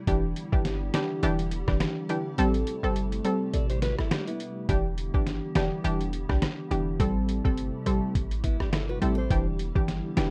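A hollow, flute-like pad in the background opens this sultry, tough dancehall fragment, its mellow detuned chords pumping under an ensemble chorus as the music alternates between Em7 and Am7 in E minor at 104 BPM with a light 16th-note swing. Up front, a warbling vintage analog pluck with chorus, a deep, boomy 808-style sine bass and a compressed, muffled, pitched-down sampler drum kit of thumpy kick, rim click, hi-hat and medium-tuned snare carry the groove; the kick drops out from 2.4 s until 4.7 s. A small, fingerpicked nylon-string guitar with fresh strings adds brief arpeggios from 3.5 s and again later, all within a rough home-demo mix with light reverb.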